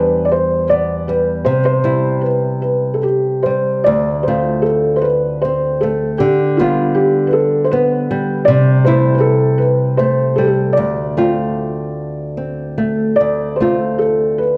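Dark and intimate in a moderate recital hall reverb, this mournful, longing Celtic slow air in D dorian drifts in rubato 3/4 around 72-80 BPM, with a soft, felt-muted upright piano carrying the melody up front, its action noise audible, over fingerpicked nylon-string guitar accompaniment with finger squeak, both playing throughout the 14.6-second excerpt as chords move from Em7 through C, Dm7, G7/D and C6.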